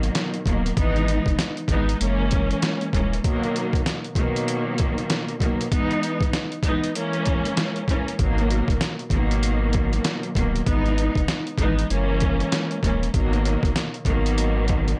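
Lush, bowed symphonic strings with expressive vibrato and a cassette-tape tint sit up front in this moody, gritty boom-bap hip-hop clip at 97 BPM in G# minor with a 62% swing on the sixteenths, driven by a compressed, pitched-down sampler-style drum kit with a thumpy kick and medium-tuned snare, while a deep, round dub sub bass plays from 0.0 to 3.2 seconds and returns at 8.2 seconds, all captured in a dry, saturated hardware sound over chords that move from G#m9 through Bmaj7 and Emaj7.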